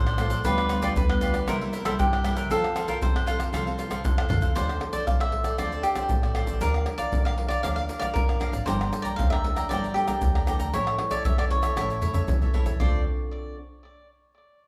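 A straight, lively samba-and-choro groove in four sits up front, driven by a deep surdo, agogo bells, tube shaker, pandeiro and tamborim played with hard hands and miked close, with drum fills at 4.2 and 11.8 seconds. Beneath it, a woody pizzicato upright bass on steel strings holds the low end from the background, while a fingerpicked nylon-string guitar with fresh strings adds a deep, classical-toned accompaniment. Two cavaquinhos share the upper register: one plays a mellow picked melody colored by tape echo, and the other picks out a crisp accompaniment. The harmony shifts into D minor at 4.6 seconds, giving the cut a nostalgic edge beneath its bright energy. The whole band plays live together in one large studio, bathed in a generous, wet reverb, in a passage cut from a longer piece.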